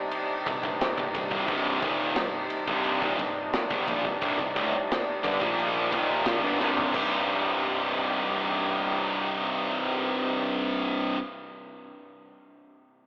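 A double-tracked fuzz guitar sits up front with a bright, distorted riff, while two high-gain guitars grind out their own riffs in the background and a growly, punchy picked electric bass rumbles beneath them in this relentless, dark heavy metal fragment cut from a longer piece. A soft, shimmering pipe organ with string celeste stops holds sustained chords, and a polished, airy drum kit with a tight kick and medium-tuned snare drives the music with crash, ride and toms before a drum fill at 6.6 seconds, after which the drums drop out at 7.1 seconds. It is all bathed in a drenched cathedral reverb, yet the rough rehearsal-room capture gives it a thin, telephone-like tone.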